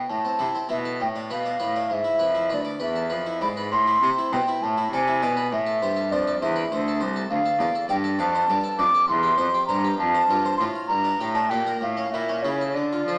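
From the first moment, a baroque flute, harpsichord and cello sound together in an introspective, solemn slow movement in the manner of a baroque sonata with continuo, set in a steady 6/8. The close-miked flute carries the melody with a pure, woody tone, a crisp attack and expressive vibrato, standing clearly in front of the other parts. Beneath it, the harpsichord fills in the harmony with a dry, brilliant, plucked sound, its octave strings adding body. The single bowed cello holds down the bass with a rich, reedy gut-string tone in period style. The harmony turns toward a new key center at 7.3 s, passing through darker chords before settling on a bright major chord near the close. A resonant recital-hall reverb surrounds the ensemble, though the overall sound has the narrow character of a small speaker, and the passage is cut from a longer piece.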